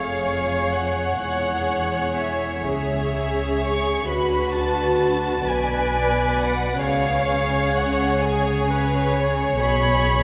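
A slow romantic classical movement for strings, this short passage cut from a longer piece moves at 43 BPM in 6/8 with uneven beats and free rubato, its mood solemn and elegiac. First violins carry the melody high above, while a second violin section sings an inner line just up front of the rest, violas fill in the accompaniment, and cellos and double basses share the bass an octave apart. All five sections play together throughout the 10.2 seconds, bowed sul tasto with soft attacks and vibrato, the double basses with only a light vibrato, giving an intimate, close chamber blend. The harmony settles around C-sharp minor, passing through a B minor colour before reaching C-sharp major at 6.8 seconds and closing on an open dominant-seventh sonority over B at 9.6 seconds. A long cathedral reverb bathes the ensemble, placing it in a resonant church or concert hall.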